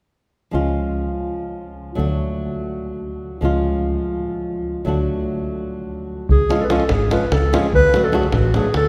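A mellow, classically styled solo clarinet sits up front and carries the melody once it enters at 6.3 seconds, lending a fiery, restless Balkan wedding-band piece a smooth lead voice. Before that, from 0.5 seconds, a fingerpicked flamenco guitar and a fingered electric bass set up the accompaniment in a straight 7/8. The acoustic guitar is also up front, with audible finger squeak, while the bass is direct, amped and foam-muted. The harmony alternates between C# and D chords throughout. A davul joins with the clarinet, its tight, compressed and saturated hits pushing the second section forward. A drenched cathedral reverb fills the church-like space, and the excerpt is cut from a longer piece.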